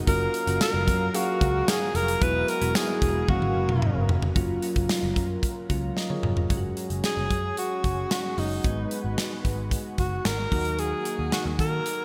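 1980s-style pop with a glossy, uplifting mood, this short passage from a longer piece features a breathy, whispered alto saxophone melody up front, carrying vibrato and scooped notes in shimmer reverb, over mellow, detuned electric-piano-like synth keys, a dark sawtooth analog pad in the background, a round, foam-muted picked electric bass, and a polished studio drum kit with tight kick and gated reverb that plays fills at 3.3 and 6.0 seconds, all set in a lush hall with bright digital production.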